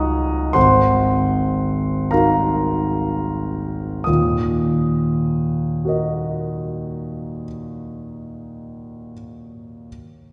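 In a rubato 6/8 that slows through the opening 4.1 seconds, this wistful, mysterious passage of impressionist solo piano, cut from a longer piece, places an intimate grand piano up front with audible action noise and long sustain, drifting from a Dbsus24 and an Ab9 into a new chord at 4.1 seconds, all within a wet concert hall reverb heard from further back in the room.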